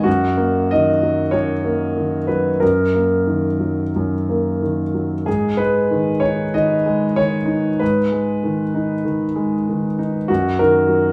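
A solo concert grand piano sits up front with an intimate, boxy tone, deep bass, long sustain and audible action noise, ranging from F#2 to D#5 in this short passage cut from a longer neoclassical minimalist piece. In G# minor and 4/4, the reflective, melancholic playing drifts with rubato between 89 and 100 BPM, moving from D#m/F# to G#m at 5.3 seconds and returning to D#m/F# at 10.3 seconds. A wet studio reverb surrounds the piano with the feel of a live performance in one room.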